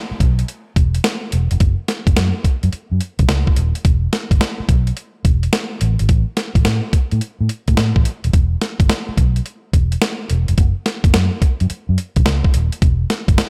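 A dark, round, foam-muted vintage fingered electric bass opens this slick, bouncy new jack swing R&B excerpt at 107 BPM in E dorian, swung on the 16ths in a dry room, and is joined a moment later by a gritty, compressed boom bap sampler-style drum kit that sits up front with a thumpy kick, high-tuned snare, hi-hat and gated reverb.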